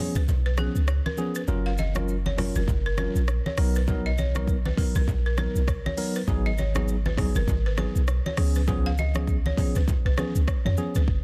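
A deep, boomy 808-style bass with a dark sine tone, a noise layer and a fast attack that decays sits up front in this sunny, romantic afrobeats excerpt at 100 BPM, swung on the sixteenths, over chords moving from C#7 through F#maj7, Bmaj7 and G#m7. A clean tine electric piano with medium tremolo through a combo amp sounds first, then a layered deep house kit of hi-hat, rim click, shaker and deep kick joins, its kick muted from 1.5 to 2.7 seconds, while a woody, buzzing balafon riff struck with hard rubber mallets carries digital delay and low-tuned, ringing congas sit in the background. The mix is dry, dense and heavily limited.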